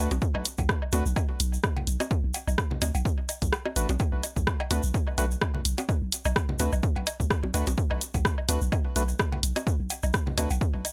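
A dry mix opens this brief cut from a longer minimal techno track, hypnotic and quirky at 127 BPM in B minor with a gentle 16th-note swing, resting on a single Bm7 chord. An up-front electronic kick and a tape-saturated analog drum machine with hi-hat and rim click drive the groove alongside a deep, sine-based sub bass that pumps from sidechaining, while the kick drops out briefly between 3.5 and 4.0 seconds. Layered bongos, woodblock, cowbell and congas with delay, a grainy egg shaker, and hollow, ring-modulated organ stabs colored by chorus, cassette tape and delay add quirky detail throughout.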